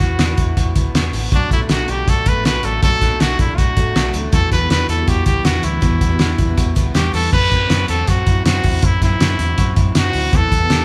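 Jangly indie pop at 160 BPM in E minor, this short cut from a longer piece has a wistful, bittersweet mood, with the band sounding as if it plays live together in one room under light reverb. A bright trumpet carries the melody up front, its tone punchy and touched with light vibrato in a pop style. Underneath, an electric guitar through a small old amp plays slightly broken-up arpeggios, compressed and lo-fi, bathed in spring reverb, while a vintage muted fingered bass gives a dark, round, foam-muted bottom. The cloth-damped drum kit sits up front with a thuddy, muffled sound, a fat snare, a tight kick and dark cymbals, gritty and rolled-off on top. A picked twelve-string acoustic guitar enters at 1.3 seconds, shimmering and octave-doubled in the background with audible finger squeak, drops out at 7.3 seconds as the harmony moves to a rootless D9, and returns at 10.3 seconds on the closing E minor chord.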